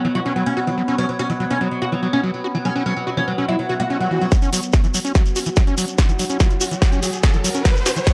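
A straight 4/4 pulse at 144 BPM drives this intense, psychedelic trance excerpt, cut from a longer piece and centred on an F#5 chord. For the first 4.3 seconds a bright, woody oud, plucked with a plectrum on doubled fretless strings, carries the melody up front, roughened by vintage 12-bit sampler grit, phaser, digital delay and sidechain pumping. Beneath it a sawtooth-and-sine drone sustains chords with moving overtones, a slow attack and long release, soaked in chorus, phaser and its own reverb while a filter sweeps across it, and a screaming acid line snarls through a squelchy, resonant, distorted sawtooth riff with chorus and delay. An electronic swell arrives at 3.6 seconds, and at 4.3 seconds the build-up begins: a punchy, layered electronic kick sits up front, joined by a big-room kit with a punchy snare, metallic high-passed hats and a drum fill. A grainy, mellow shekere, close and dry, adds acoustic texture as a riser climbs to the end under light reverb.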